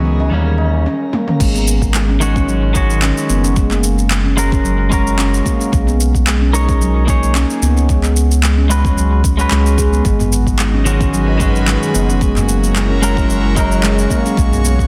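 Organic downtempo with a mystical, meditative mood, this excerpt moves at 111 BPM in G# minor with a light swing on the sixteenths. Ringing handpan arpeggios and a bright, twangy clean electric guitar with delay carry the music throughout, while a round, up-front sub bass with tube saturation anchors the low end. At the opening, a twinkling granular shimmer and high-tuned tabla sit briefly in the background alongside a breathy, chorused pad before a short break and drum fill at 1.1 seconds. The overdriven electronic kick arrives at 1.4 seconds with a deep house kit of handclaps, shaker, toms and crash, the guitar and bass pumping against it. The pad returns at 10.1 seconds, with the tabla just after, as the chords move through G#m7 and F#7, and the dense, heavily limited mix carries a light digital ambience.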